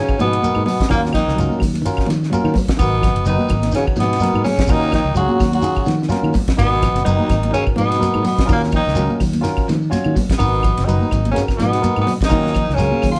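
A raspy, gritty tenor saxophone leads this defiant, driving afrobeat excerpt at 126 BPM in G# dorian, with a light vibrato and a punchy but distant, roomy tone, shadowed by a smooth-topped trombone on a second line. Underneath, a dry 70s drum kit with a fat snare and tight kick sits up front beside a round fingered electric bass, while congas, shekere and woody claves sit in the background. A lightly overdriven, barky tine electric piano and a clean picked electric guitar with spring reverb fill out the G#m7 to D#m7 vamp, all captured as a band playing live in one small room.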